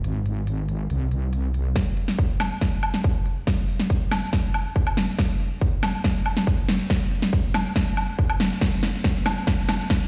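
A heavy wobble dubstep passage in F minor at 140 BPM, taken from a longer piece, opens with a saturated, detuned wobble bass sitting low and up front, its sawtooth-and-sine tone thickened with chorus and overdrive, alongside a big-room dance kit of punchy snare, crisp hi-hats and woodblock. The bass drops out at 1.7 s, and at 1.8 s an overdriven electronic kick drum joins the kit. From there the drums carry a chaotic build-up, a drum fill running through to the end in a half-time feel. Both percussion parts sound layered, produced and pushed hard through overdrive, giving the passage a heavy, chaotic edge. A lush hall reverb and the boom of a big sound system in a bare stone room surround the mix.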